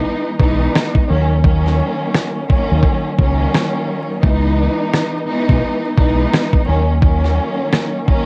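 Boom-bap hip-hop at 86 BPM with a swung sixteenth feel, tough and dark, where a lush bowed string section with vibrato and a smooth top sits up front through cassette-tape filtering, a round, punchy fingered electric bass enters at 0.4 seconds under C#m7 and D#m7 chords, and a gritty, compressed sampler-style drum kit with thumpy kick, fat snare and rim click pushes forward, all wrapped in studio reverb, vinyl crackle and home-cassette grit in a short excerpt cut from a longer piece.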